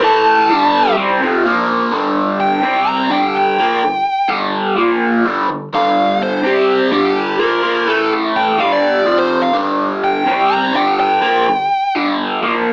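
Driven by a straight 4/4 pulse at 126 BPM, this swaggering, gritty rock excerpt in G minor is built around two electric guitars. A raw garage guitar, bright and double-tracked, sits up front with a picked, overdriven riff in its low-to-middle register, colored by a phaser, and runs until 12.7 seconds. Over it, a dark fuzz lead guitar picks a distorted melody in a higher register before dropping out at 11.9 seconds. The harmony moves through power-chord shapes on A, G, Bb, C and F, settling repeatedly on G minor. A short opening passage gives way at 1.9 seconds to the main section. The sound is wet with studio reverb, yet boxy and compact, as if heard through a small speaker, which adds to the gritty, lo-fi attitude.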